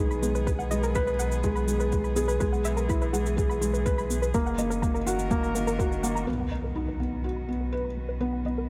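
A felt-muted upright piano sits up front with a soft, intimate riff, its thick felt and audible action noise giving this tender, hopeful piano and strings electronica its character, while a dark, woody string quartet holds bowed chords with vibrato beneath it and a round sine sub bass pumps with the sidechain. A soft, gentle pluck adds arpeggios coloured by chorus, cassette tape and digital delay, over a tape-warm shaker and a deep, overdriven electronic kick that drops out at 5.9 seconds. At 6.3 seconds the music settles onto a Badd9 chord as a very quiet impact lands and a filter sweep moves across the arpeggio, all in light digital ambience.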